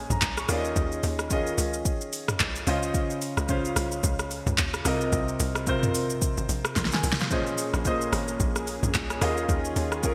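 A relaxed, soulful amapiano groove in Ab major moves at 110 BPM in 4/4, its 16th notes swung at 58%. A layered, up-front deep house drum kit enters at 0.1 s, treated with gated reverb: a deep kick, fat snare, metallic hi-hats, handclaps, rim clicks, shaker and toms. A drum fill arrives at 6.8 s. Beneath the kit sits a tight, punchy log drum bass with an FM tone, a noise layer, a fast attack and a decaying body. Above it, a present, polished grand piano with short sustain and subtle chorus carries the chords through Eb9sus4, Dbmaj9, Ab69, Bbm11 and back to Eb9sus4. At 7.3 s a smooth, detuned sawtooth pad with a soft attack and long release slips into the background, colored by chorus and sidechain pumping, while a lush hall reverb and bright 1980s-style digital production frame this cut from a longer piece.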